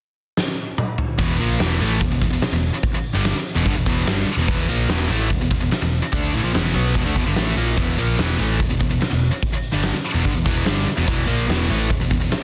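Hard rock at 146 BPM with a swaggering, anthemic mood, this brief fragment of a longer piece opens with a huge arena drum kit, fat-snared, natural and up front, playing a fill from 0.4 seconds, before a bright, distorted high-gain guitar, a warm overdriven semi-hollow guitar and a dark, round, punchy picked electric bass all crash in at 1.2 seconds on an E5 riff, with light reverb and a dense, heavily limited modern master.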